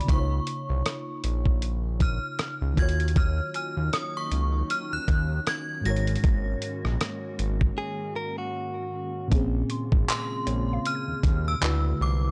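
A gritty, compressed sampler-style drum kit with a thumpy kick, rim clicks, hi-hat and handclaps sits up front in this sensual, moody contemporary R&B cut from a longer piece, lightly swung over a fat, detuned sawtooth bass, a soft, round FM electric piano with chorus and a ringing, inharmonic synth chime melody with tape echo, while a glassy, ethereal FM pad with sidechain pumping enters at 3.2 seconds, a woody, warbling mallet-like synth pluck drifts in the background, and a clean, direct-recorded electric guitar plays picked arpeggios during a break at 7.8 seconds, all in a dry, gritty hardware recording.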